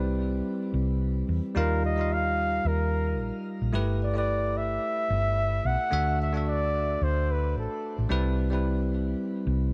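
A small room's light reverb frames this relaxed, blissful sunset chillout fragment in G major at 110 BPM, with a gentle 16th-note swing and a bright, bell-like tine electric piano and a dark, round, hollow-body electric bass running from 0.0 to 9.7 seconds over chords moving from Cmaj7 through Ebadd9, G69 and D back to Cmaj7. A close-miked, mellow flugelhorn carries the solo melody from 1.6 to 8.0 seconds, played in a classical style with light vibrato, while shimmer reverb and delay glow around both the horn and the keys.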